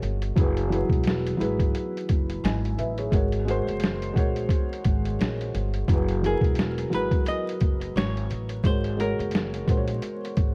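Lo-fi hip hop at 87 BPM in F# mixolydian with a cosy, mellow mood and a swung 16th feel, opening on a felt-muted upright piano heard up front with soft, intimate tone, audible action noise and cassette-tape filtering, over a woody, gut-strung pizzicato upright bass and an overdriven, pitched-down sampler-style kit with a thumpy kick, medium-tuned snare and hi-hat, all cycling between F#9sus4 and G#9sus4 in a small room amid vinyl crackle, until a dark, hollow-body archtop guitar picks out a clean, filtered melody with tape echo from 6.3 to 10.0 seconds in this brief cut from a longer piece.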